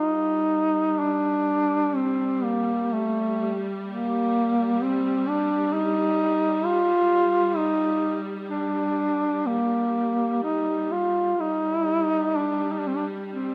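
A mellow duduk carries a solemn, longing Caucasian lament up front, its folk-style vibrato singing between A3 and F4 in G minor throughout the 13.5-second passage. Beneath it, a lush, focused studio string section holds a bowed drone on G3, close and clear with its own vibrato, while the slow 64 BPM triple metre moves with uneven, rubato beats. A moderate concert-hall reverb of 2.2 seconds lends the fragment, cut from a longer piece, a spacious, mournful air.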